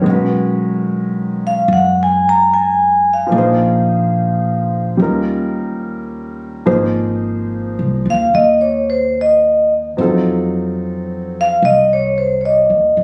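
Captured on a phone in the room and given light studio reverb and compression, this intimate, melancholic jazz ballad fragment swings gently in 4/4. A grand piano, up front with its action noise audible, opens the accompaniment at the start alongside the woody pizzicato of a steel-strung upright bass. At 1.5 s a dark, ringing vibraphone played with medium mallets and its motor off enters with the smooth, metallic melody over chords such as Eb9 and F7b9.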